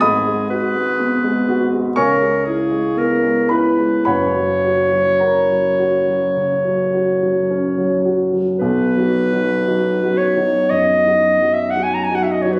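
Flowing in a gently rubato 4/4, this tender, serene excerpt of a romantic classical duo pairs a warm, close-miked clarinet singing the melody up front with a dark, mellow grand piano accompanying from deep bass to high treble, both playing throughout. The harmony drifts through G#m7, C#m7 and F# before settling onto B at 8.6 seconds, opening a new section. A moderate recital-hall reverb surrounds the pair, captured on a phone in the room.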